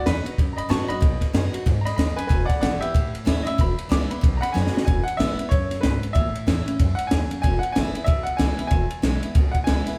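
Rockabilly at a brisk 187 BPM in E major, this upbeat, retro clip swings its eighth notes and is cut from a longer piece. A bright upright piano carries the melody with a brilliant, polished tone and short sustain, taking a solo through the first 4.9 seconds before a drum fill from 4.5 seconds leads into the next section. Beneath it, a picked steel-string acoustic guitar supplies full-bodied accompaniment with the fresh sparkle of new strings, while a pizzicato upright bass adds a woody, thumpy low end. A compact cocktail kit of kick, snare and ride sits up front, its punchy kick and high-tuned snare set against a dark, smooth character. The band plays live together in one room, and a moderate stone-room reverb gives the performance an open, natural space as the chords move among B, E and A.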